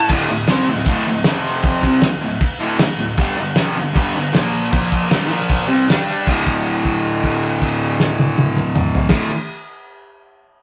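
A double-tracked fuzz guitar leads this swaggering, rowdy garage rock excerpt at 156 BPM in straight 4/4, playing a bright, distorted riff up front over D5, F5, G5 and Bb5 chords. A cloth-damped, thuddy acoustic kit with a fat snare, tight kick, toms and dark crash cymbals sits close beside it, while a very quiet, jingly tambourine plays until 6.5 s. At 6.3 s a new section begins around a held note, all captured as a rough rehearsal-room recording with tube saturation and light reverb.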